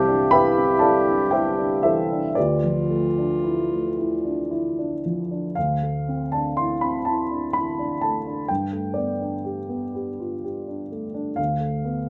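A dark clarinet with a soft attack and smooth top sings a brief, hazy melody over a mellow, worn baby grand piano, then falls silent at 5.0 seconds while the piano carries on alone until 12.1 seconds. This impressionist classical duo in D dorian moves in a rubato 3/4 at roughly 55-64 BPM, its wistful harmony drifting from Cadd9 and Dmadd9 through Dsus2 and Gadd9 to a closing Dm6. Close, detailed microphones and light reverb keep the vintage-toned piano up front in this fragment of a longer piece.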